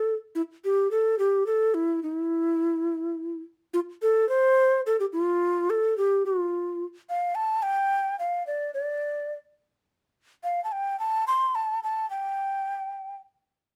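Melancholic yet festive, this Andean folk piece moves at 72 dotted-quarter beats per minute in a straight 6/8, cut from a longer work. A lone large quena carries the whole passage from 0.0 to 13.2 seconds, ranging from E4 to C6 with a hollow, airy wooden tone, vibrato and a crisp, chiffy attack, close-miked and up front in light reverb. The melody shifts into a new section at 7.1 seconds.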